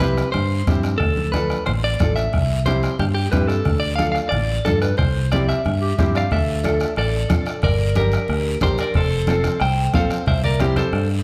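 A danceable, passionate cumbia excerpt at 181 BPM opens with a dark, clean electric guitar carrying the melody up front, dressed in spring reverb and slapback echo, over a clear, woody upright piano, a round, punchy fingered electric bass and a vintage, band-limited bombo. Ringing congas sit in the background while a raspy guiro scrapes close and dry, all set back in a moderately reverberant large studio. At 5.8 s a breathy, mellow clarinet slips in a brief subtone note, and from 6.3 s the music settles into D minor, moving through Dm, Gm, F and C.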